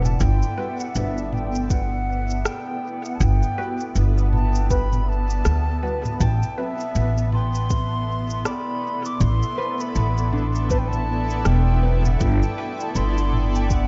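Ambient dub at 80 BPM with a swung sixteenth feel, this hazy, deep fragment of a longer piece moves from Gmaj7 to Am69 and back, carried by a pure, hollow, close-miked concert flute melody with vibrato and dub echo over a blurred, evolving granular cloud pad. Up front, a woody, thumpy pizzicato upright bass on gut strings anchors the low end alongside a soft electronic kick in the background and a produced electronic kit of rim click, shaker and toms treated with studio reverb and dub echo. Muted, nasal filtered dub chord stabs with phaser and lush chorus sit low in the mix until 12.8 seconds, and a ringing, thumb-plucked concert harp enters at 6.2 seconds with arpeggios roughened by vintage 12-bit sampler grit.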